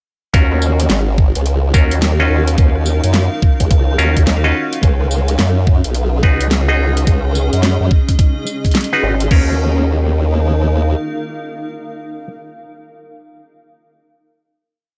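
A formant-sweep wobble bass with detuned, chorused phrases of changing wobble speed drives this gritty, swaggering glitch hop piece, joined by a knocking electronic kick, a swung dubstep kit with a huge snare and metallic hats, overdriven auto-wah clav stabs with sampler grit and sidechain pumping, and a cloudy granular pad entering at 1.6 s, as the piece settles on a final Ebm9 chord at 9.3 s and the drums drop out at 9.5 s.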